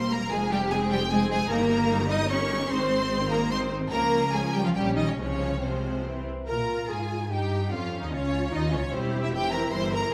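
Heard through a moderate scoring-stage reverb, this urgent, stormy fragment of a quick classical-period movement for string orchestra moves in a rubato three-four, with a focused first violin section singing the melody over a smooth, lush second violin line, expressive violas sliding with portamento, and distant cellos and soft-attacked double basses sharing the bass.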